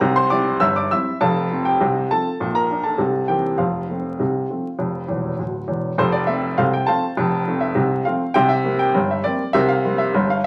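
Ragtime piano in F major at 101 BPM in a straight 2/4, this lively, cheerful passage cut from a longer piece features a solo upright piano with a woody, polished, up-front tone and short sustain, spanning low bass to high treble, that moves from an opening strain into a second one after a brief fill at 5.1 seconds, set in a wet club reverb with a layer of vinyl crackle.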